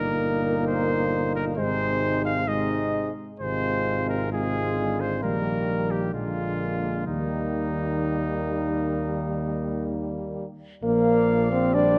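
A noble, stately classical brass quintet fragment in a slow straight four, with a smooth-topped trumpet carrying the melody up front over a lightly vibrato-tinged, punchy flugelhorn second line in the background, a soft-attacked vintage French horn and a bright, distant, very quiet trombone as accompaniment, and a mellow, roomy tuba bass, all sounding together throughout a concert hall's moderate reverb until the harmony turns at 10.8 seconds.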